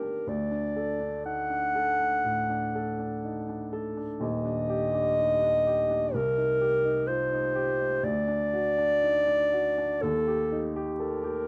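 A dark, punchy clarinet carries the melody from the first moment, close-miked and up front, singing in a classical solo style between A4 and F#5. This is a short cut from a longer romantic duo for clarinet and baby grand piano, melancholic and solemn in mood, moving at a slow 61 BPM in 4/4 with a free, rubato feel. The baby grand supplies the accompaniment beneath it, mellow, smooth and vintage in character with a long sustain, reaching from low Eb1 up to A4 and sitting slightly behind the clarinet in level. The harmony moves from D through Ebmaj7 and C minor, returns to D at 8.0 seconds, and settles on Eb at 10.0 seconds. Light reverb and a dark, warm production give the whole passage a sombre glow.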